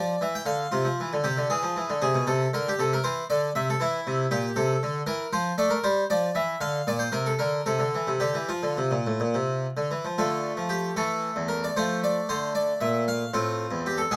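In a lilting 6/8 at roughly 70-80 BPM counted in dotted quarters, this baroque-style suite movement moves with a supple rubato that gives its serene, flowing mood an unhurried, breathing pulse. A solo harpsichord carries the whole piece, its plucked tone full and ringing from two sets of strings, voiced in a French manner and placed up front, ranging from E2 up to G5. The harmony opens in shadow on D minor before settling into F major at 3.8 s, passing through chords such as Bb and C on its way home. At 10.2 s the opening material returns and the music turns back toward D minor, closing this brief passage on an A minor chord. Light reverb lends the instrument a gentle sense of space, and the short fragment, cut from a longer movement, lasts about 14 seconds.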